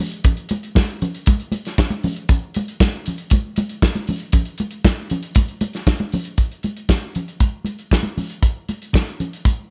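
Danceable and driving, this short disco cut sets a warm soul drum kit up front, its fat snare, tight kick and hi-hat carrying a mid-forward, rolled-off tone from a small room, while high-tuned congas with a thick, damped skin sit close and soft-handed beneath, the whole passage dry, shifting into a new section at 6.4 seconds.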